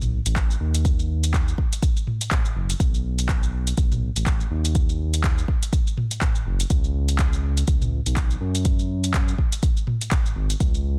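A dense, heavily limited modern master with little room sound carries this driving, warm afro house excerpt at 123 BPM in 4/4 with swung sixteenths: a dark, smooth synth bass blending sawtooth and square waves with ring modulation sits up front between F#1 and F#2 and pumps under sidechain, a deep electronic kick arrives up front at 0.4 s, and a produced afro-pop kit of handclaps, metallic hi-hat, shaker and toms sits lower in the mix, with both drum parts carrying a touch of studio reverb.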